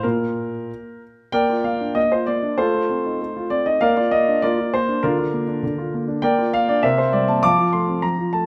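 A 2/4 pulse at 98 BPM, played with a rubato feel, carries this cheerful, elegant classical-period sonatina in Bb major, cut from a longer piece. A concert grand piano plays alone and up front from 0.0 to 8.5 seconds, spanning Bb2 to D6 with a deep bass, an open tone and long sustain, and a new passage begins at 1.3 seconds that moves through Bb, F7/A, Bb/D, Gm7/Bb and C5 before settling on F. Close, detailed microphones capture the instrument within a moderate recital hall reverb.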